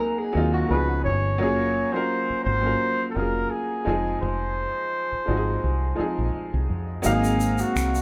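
A short, introspective, late-night stretch of neo-soul R&B at 85 BPM opens with a clear, woody upright piano and a brief, slightly broken-up electric guitar line through a small old amp, its spring-reverbed phrase ending by 0.9 s. A deep dub fingered bass comes in at 0.4 s, round and punchy with a foam-muted, dark tone sitting up front. A flugelhorn takes the melody from 0.7 s, its scooped notes heard in a distant, roomy pop style over chords moving from Ab9 through Db9 and Gbmaj9 to Fm7. The piano's worn, slightly detuned character gives the harmony a lived-in feel, while a gently swung sixteenth-note pulse keeps the groove relaxed. At 7.0 s, as the harmony lands on Ab13, a hollow, flute-like pad with chorus enters in the background alongside egg shaker and finger snaps, all captured with light reverb as a band playing live in one room.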